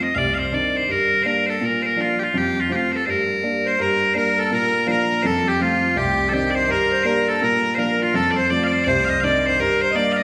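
Swung eighth notes in 4/4 drive this dark, lively Celtic folk passage, a short cut from a longer piece. Loud, piercing bagpipes carry the melody up front in a continuous solo line from the start. A dark, woody upright piano, also up front, gives mellow, natural accompaniment underneath, cycling through a minor-leaning progression built on Cm(add9), Gm, Bb and F. At 3.7 seconds a reedy, hollow accordion joins with a second line in the same register as the pipes, thickening the texture as the opening section repeats. The whole performance sits in the reverberant ambience of a recital hall or church, giving the sound a spacious, resonant tail.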